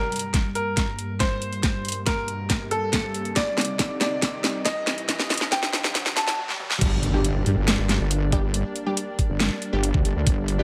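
This heavy, chaotic half-time wobble dubstep excerpt in G minor at 139 BPM opens with a bright concert grand piano melody and a lush, warbling unison pad sweeping through filters over a background riser, a knocking kick and a huge-snared kit with metallic hats that builds with fills until the drop at 6.8 seconds, where a saturated, up-front wobble bass arrives with an electronic impact, joined moments later by a bold, punchy orchestra-hit-like synth stab.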